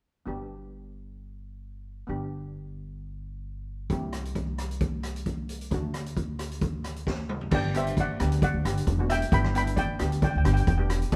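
Recorded live in a stone room with moderate reverb, this carefree, sunny calypso in G major moves at 132 BPM with a light swing, cut from a longer piece. Cello pans struck with hard rubber sticks lay down a metallic, shimmering accompaniment over a woody, thumpy pizzicato upright bass with steel strings. A street-band kit with a high-tuned snare, boomy kick and dark cymbals joins at 3.9 seconds and plays a fill just before the lead pan's bright melody enters at 7.5 seconds.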